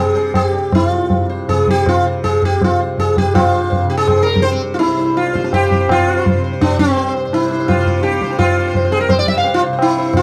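A buzzing, round sitar with sympathetic strings rings out up front in plate reverb over a softly plucked, shimmering tanpura drone, joined at 0.2 s by a low-tuned, short-ringing tabla with a vintage, band-limited tone, as this devotional, radiant Hindustani classical passage in an uneven seven-beat metre gathers speed throughout and moves into a new section at 3.3 s, set in a dark, warm studio sound.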